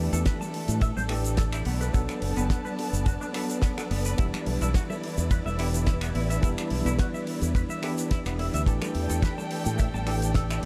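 A dry, tight acoustic kick drum sits up front in this sleek, sensual nu-disco excerpt in E minor, moving at 107 BPM in 4/4 with a light swing on the 16ths. Beside it, a brilliant-toned fingered electric bass run through an envelope filter carries the low end, also up front, while a damped 70s drum kit adds a fat snare, hi-hat, ride cymbal, shaker and finger snaps, and very quiet congas and bongos sit in a small room beneath. A worn, slightly out-of-tune tine electric piano, lightly overdriven as if through built-in speakers and touched with analog delay, plays the accompaniment, pumping with the sidechain along with the bass and a distant, lush string section whose bowed chords carry vibrato and portamento. A clean, picked semi-hollow guitar with a hollow-body tone plays a riff dressed in rich chorus and analog delay. The harmony moves from A7sus4 to Bm7 at 1.7 seconds and Em7 at 4.2 seconds before returning to A7sus4, all bathed in a huge ambient reverb that gives the mix a dreamy, soaked quality.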